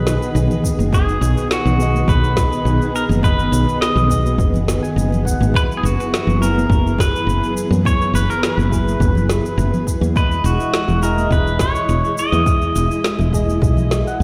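A bright, twangy pedal steel guitar carries the melody with volume swells and delay over a smooth, blissful sunset chillout groove at 104 BPM in B major, where a growly, up-front fretless bass, a punchy electronic kick, a woody electronic snare with shaker and very quiet congas sit beneath mellow chorus-and-phaser synth keys and a silky vintage string machine in the background, moving through B6, F#9sus4 and Emaj7 in this short fragment heard as if played on a big sound system in a bare stone room.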